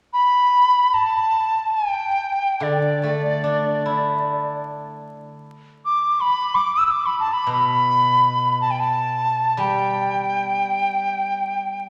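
A reedy large dizi carries the melody up front, its bamboo tone airy and buzzing with a soft attack, vibrato and rolled-off highs, giving this excerpt of Chinese traditional chamber music a pastoral yet festive mood. At 2.6 seconds a steel-string zither joins in accompaniment, played with fingerpicks and sounding silvery and ringing. A wet concert-hall reverb surrounds the pair, with vinyl crackle beneath.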